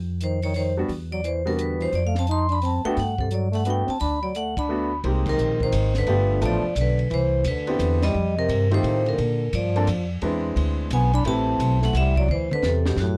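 Swinging in a brisk 3/4 at 174 BPM, this sophisticated small-group jazz excerpt in G major opens on a woody pizzicato upright bass. Vibraphone carries the bright, ringing melody with a slow motor vibrato, while a punchy trombone adds a forceful second line full of scooped notes. A clear upright piano comps from 0.8 seconds, and a compact cocktail kit with a dark, rolled-off top, high-tuned snare and tight kick marks band accents at 4.5, 5.2 and 8.0 seconds before a closing fill, all in a dry, close 1970s-style studio sound that keeps the bass up front as the harmony moves through rich ninth chords from Fsus2 toward Dadd9.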